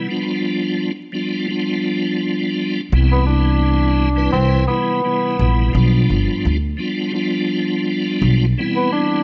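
Vinyl crackle and a moderate echo-chamber reverb in a small room frame this soulful, nostalgic boom-bap hip-hop excerpt at 85 BPM with a light swing in C major, where a breathy, growling tenor saxophone with subtone and vibrato carries the melody over a lightly overdriven tonewheel organ with key click and a slow rotary speaker, while a woody, thumpy pizzicato upright bass enters at 2.9 seconds and stops at 8.5 seconds as the chords move between G7 and Cmaj7.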